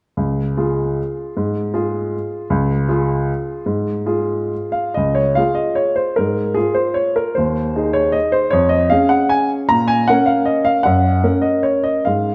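A clear, woody upright piano plays alone from 0.2 seconds in this graceful, playful classical waltz excerpt in Db major, moving in a rubato 3/4 between 124 and 165 BPM, its smooth, vintage tone sitting up front with long sustain inside a wet recital hall reverb as the harmony passes from Db through Ab/Eb, Db/F and Bbm to Gb before the cut at 12.3 seconds.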